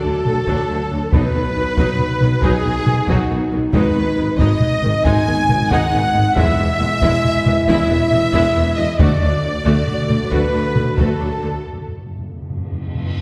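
A wet scoring-stage reverb sets this adventurous, triumphant epic film cue in 12/8 further back in the room, as it is cut from a longer piece. Distant, intense symphonic violins carry the melody over a smooth-topped chamber violin line, lush violas, tight French horn chords and mellow trumpet stabs, while very quiet rich cellos, a solo tuba and close double basses hold the bass beneath heavy-stick taiko drums. As the strings and brass end near 11.7 s, close, dry calf-head timpani fill the break and a huge, dark cymbal swell enters at 12.2 s.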